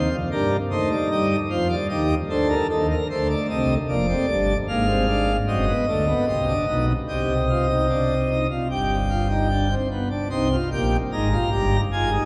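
A straight 4/4 pulse at 75 BPM drives this brief, contemplative excerpt of a baroque-style three-part fugue in C minor, played solo on a pipe organ whose full plenum with mixtures sounds brilliant and up front in a romantic voicing across a span from F1 to C6, its harmony passing through diminished chords before a G chord resolves to C minor as a new section begins at 10.3 seconds, all set in a dark production with a long, wet cathedral reverb.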